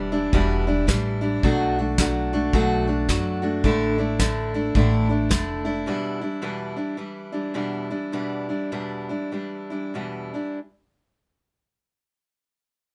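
This acoustic folk piece for a small band has a wistful, intimate mood and a loose swing feel with uneven beats. A picked steel-string acoustic guitar sits up front with a warm, concert-like tone and audible finger squeak, carrying the accompaniment through the whole excerpt over chords moving from Em7 to Bm7 and Asus4. A pizzicato upright bass adds a woody, dark low end, and a soft brush drum kit brings an airy, polished studio-room sound with a fat snare and tight kick. The bass and drums drop out before 6 seconds, leaving the guitar alone as the chords return to Em7. From 5.9 seconds the music slows down until it breaks off at 10.6 seconds, all under a light reverb.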